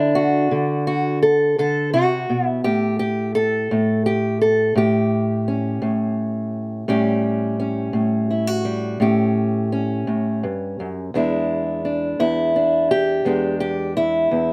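A fingerpicked old ladder-braced acoustic guitar, dark and boxy with the woody tone of old strings, plays up front alone in this soulful, swaggering acoustic country blues excerpt in a straight 12/8, moving from D7 to A7 at 2.6 seconds and on to E7 at 11.1 seconds inside a small room's moderate reverb.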